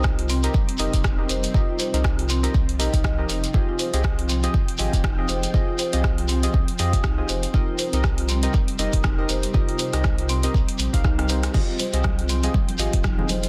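Afro house with a driving, hypnotic swing, built on an up-front, tape-warm electronic kick and a layered deep house kit of crash, hi-hat and rim click, with soft clipping on the snare, while a round sine sub bass pumps beneath shifting Cm7 and Fm9 chords. An ethereal, warbling pad with ensemble chorus and its own reverb sustains over mellow, decaying chord stabs and a woody marimba arpeggio, both touched with digital delay, as a grainy shekere sits in the background. After a drum fill at 11.0 seconds, ringing congas played with soft hands join at 11.5 seconds in this dense, heavily limited, fairly dry mix.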